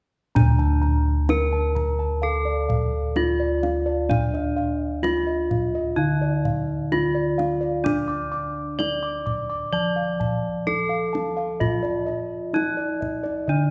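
Opening at 0.4 s, this short cut from a longer Javanese gamelan piece moves at a stately 64 BPM in a straight 4/4, set in D pelog with a shimmering mood. A bronze metallophone carries the melody up front, its tone bright, ringing and close, struck with a horn mallet in a dry, full sound. Above it, a set of bossed gongs plays arpeggios in a mellow, padded voice with a boxy small-room colour. Lower bossed gongs supply the bass, round and beating, struck with soft beaters. The kendang adds tight, acoustic percussion, heard close and dry. The ensemble sits in a recital hall whose reverb lends the whole a resonant bloom, and the passage stops at 13.7 s.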